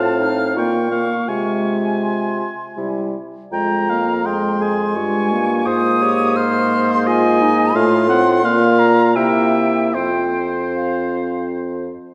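In a rubato 3/4 at 73-89 BPM, this yearning, elegiac classical movement for wind quintet in F minor, cut from a longer piece, sets a pure, crisp-edged concert flute melody with vibrato high above a present oboe second line with light vibrato, while a dark, smooth-topped clarinet and a distant, roomy French horn fill the accompaniment and a warm bassoon carries the bass, the whole quintet heard through a wet scoring stage reverb.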